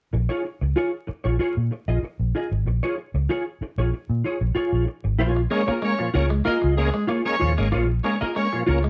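Funk with a sly, funky mood, cut from a longer piece, opening on a Bbm7 groove where a dark, compressed clean electric guitar with ensemble chorus rides over a round, punchy, foam-muted fingered bass, both up front. At 5.2 seconds a bright, shouting tonewheel organ enters with stabs through chorus vibrato and a slow rotary speaker, soon joined by a twangy, slightly broken-up picked guitar riff and a tight, clear horn section carrying a second line with light vibrato. Light reverb and vinyl crackle give the sound a vintage sheen.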